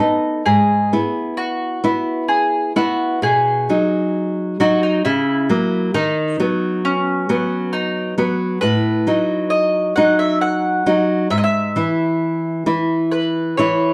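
Serene and warm, this romantic duo for mandolin and classical guitar moves in a rubato 3/4 at around 66 BPM in E major, tuned slightly low to A4 = 438 Hz, as a short passage cut from a longer piece. The picked mandolin carries the melody with a round, doubled-string tone, while the small-sounding, fingerpicked nylon-string guitar accompanies through chords such as E/G#, F#7/C# and B7/A; both play throughout the 13.9 seconds and sit up front. A wet studio ambience surrounds them, heard from further back in the room.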